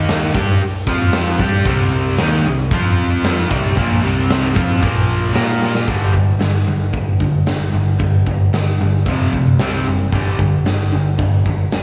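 Hard rock in G minor at 113 BPM, this driving, heavy excerpt cut from a longer piece pairs a bright, double-tracked overdriven stack guitar riff up front with a growling picked electric bass, direct and amped with its own overdrive, and a big acoustic kit with a tight kick, medium-tuned snare and hi-hat in a stone room, where a drum fill at 5.6 seconds leads into a new section at 5.9 seconds, all within light reverb and small room ambience.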